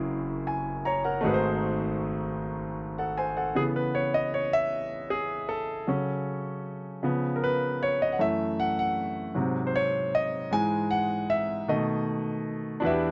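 Solemn and soulful, this short gospel piece for solo concert grand piano moves in a slow, straight 6/8 lilt, cut from a longer performance. The piano carries everything alone from 0.0 to 13.1 seconds, ranging from deep bass notes up to a clear, polished treble, with a short sustain that keeps each chord distinct. An opening passage rests on F#9 and G#7b9 before a longer section begins at 3.6 seconds, moving through rich church harmonies such as C#m7, C#7, F#m7 and Eadd9/G#, and arriving on B7 near the end. The sound is dry and close, in the manner of a 1970s studio, with the instrument placed up front and present and only a light touch of reverb around it.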